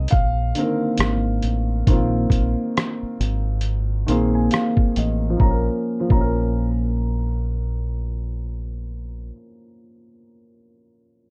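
A hazy, reflective lo-fi hip hop fragment at 68 BPM in Bb minor opens with a woody upright piano accompaniment colored by cassette tape and a low-pass filter, a soft, felt-muted upright piano melody with audible action noise and analog delay, and a round, dark dub fingered electric bass, while a compressed, pitched-down sampler-style drum kit with a thumpy kick, hi-hat and rim click sits up front until 6.3 s, the harmony moving from Bb9sus4 to Bbm at 5.4 s after a filter sweep and an upright piano fill, with the accompanying piano ringing on alone until 11.3 s.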